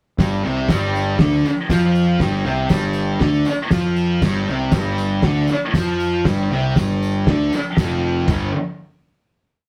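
A straight, stomping garage rock groove in 4/4 drives this short, rowdy and raw piece, built on a thuddy, cloth-damped drum kit with a fat snare, tight kick and dark cymbals across crash, hi-hat, ride and toms. Up front, a thick, double-tracked fuzz guitar hammers out an octave riff, its distorted tone warm and fuzzy. Beneath it, an overdriven, punchy picked bass doubles the riff in driving eighth notes, adding grit to the low end. A jingly tambourine sits distant in the background, as if heard from across a large room. The whole piece has the rough feel of a rehearsal-room take with moderate reverb, and after the riff runs its course, it closes on a final chord from 8.3 seconds.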